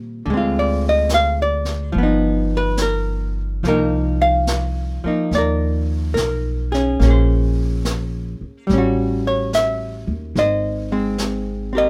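Intimate and tender, this excerpt from a longer jazz ballad moves at a slow 72 BPM in 4/4, with a gentle swing on the eighth notes and a home key of C minor from 3.7 seconds. A dark, clean, picked hollow-body electric archtop guitar sits up front as the accompaniment, voicing chords from Dm7b5 and G7alt into Cm11, Bbm9, A6 and Ab. Beside it, a pizzicato upright bass with a woody tone and steel strings also sits up front, holding down the low end from the start. A brush kit of snare and hi-hat enters at 0.3 seconds, tucked low with a natural small-room sound and a medium-tuned snare. Light reverb gives the trio a close, unhurried feel, and the tuning sits slightly flat of standard pitch.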